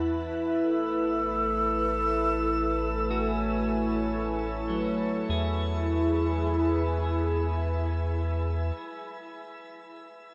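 A smooth analog pad sits up front with sustained chords, its mellow sawtooth-and-triangle tone shaped by a slow attack, a sub octave, a long release and chorus. Beneath it, a round, deep analog bass with tube saturation holds the low end, dark and steady with a filter sweep. An airy alto flute with vibrato and a soft attack carries the melody through a delay. At 3.1 seconds a clean, twangy electric guitar joins with picked arpeggios, also echoed by delay. The harmony moves from Esus4 to Amaj7 and settles on E as a new section begins at 5.3 seconds, the whole serene, peaceful ambient passage bathed in a long shimmer reverb and cut from a longer piece.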